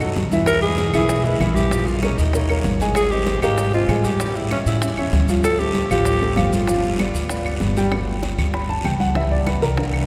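Bathed in a wet cathedral reverb, this lively, sophisticated Afro-Cuban jazz clip features a gritty, close-miked growling alto saxophone with vibrato carrying the melody until 7.6 s, over a natural-sounding baby grand piano and a woody pizzicato upright bass up front, while bright congas, round low-tuned bongos, dry claves, raspy guiro and grainy maracas fill out the percussion, and the piano takes a solo from 7.9 s.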